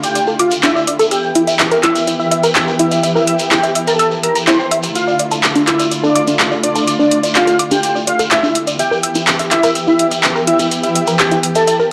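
Melodic techno at 125 BPM in a dramatic, melancholic mood, this short excerpt from a longer piece moves between Dm and Edim, with a thick, detuned unison lead carrying the melody through a filter sweep, subtle chorus, 12-bit sampler grit and analog delay, while a smooth supersaw traces a second line in the octave above through its own filter sweep and tape echo, dark, woody strings hold lush sustained chords, a tight, wave-folded sequenced synth drives arpeggios with chorus, phaser and cassette-tape color, an up-front, overdriven deep house kit snaps with handclaps and metallic hi-hats, and a grainy, distant shekere sits in a large room, all tuned to A4 = 445 Hz in a dry, gritty hardware recording lightly touched with digital reverb.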